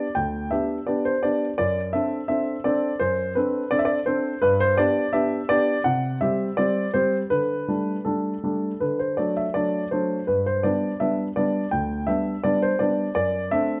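Playful and elegant, this short passage from a classical-period piano sonatina moves at a relaxed 84 BPM in a straight 4/4, set in G major with the tuning a touch above standard at A4 = 441 Hz. A baby grand piano plays alone from start to finish across its 13.8 seconds, spanning from D2 up to G5. Its tone is warm yet slightly worn, sitting present and up front in the sound. The harmony moves from G through D7/F#, back to G, then on to C5, Dsus4 and D before returning to G and closing on D7/F# at 13.2 seconds, leaving the phrase hanging open as it is cut from a longer piece. Close, detailed microphones capture the instrument, while a moderate recital hall reverb, about 1.3 seconds long, gives it a gentle sense of space.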